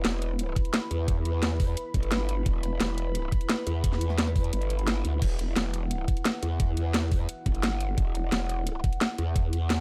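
This clip of dark technical drum and bass opens with a deep, moody analog pad sustaining an Emadd9 chord through chorus and phaser, while a growling, saturated bass wobbles beneath with overdrive and sidechain pumping, and an overdriven kit brings a cracking snare, bright hats and crash cymbal. A knocking, tape-tinged electronic kick arrives at 0.6 seconds, sits up front with the kit, and briefly drops out between 4.5 and 5.2 seconds. The mix feels futuristic and mechanical, with a dark production and little reverb.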